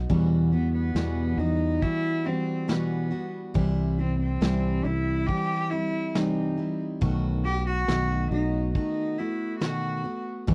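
A rich, floating bowed cello played sul tasto carries the haunting melody from 0.5 s in this intimate acoustic folk piece at 69 BPM in E harmonic minor, moving over Emadd9, C and B7, supported by a full-bodied jumbo steel-string guitar picking the accompaniment, a dark, round fingered electric bass with transformer saturation, and a muffled, lo-fi brush drum kit with a punchy kick, all set in a dry, close 1970s-style studio sound with light reverb.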